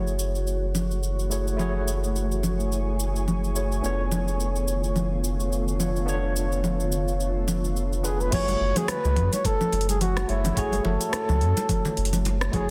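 A veiled, bucket-muted trumpet with light vibrato takes the melody from 8.1 seconds, its dark tone carried on tape echo over a worn, slightly out-of-tune tine electric piano and a shimmering, detuned pad that drops out at 8.3 seconds. This relaxed, wistful sunset chillout excerpt rides a swung smooth R&B kit with metallic hats and a softly clipped snare, a round sine sub bass sitting up front, and, from 8.3 seconds, a knocking electronic kick and damped background congas. The chords move from F#m9 to C#7b9b13/E# and back, all set in a moderate scoring-stage reverb with a dense, heavily limited modern master.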